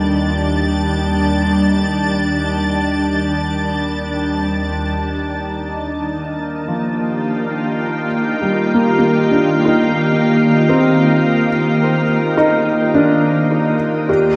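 Peaceful and warm, this ambient excerpt drifts at 52 BPM in 4/4, anchored by a soft, organ-like pad that holds sustained chords, opening on Gm7/Eb, bright and up front with ensemble chorus and shimmer reverb. A felt-muted upright piano plays mellow, intimate arpeggios through tape echo, its action noise audible, while a tense, string-like bowed drone hovers barely audible until 5.1 seconds. At 14.2 seconds a twinkling granular texture sparkles in the background, and the mix is echo-heavy, steeped in a wet spring reverb.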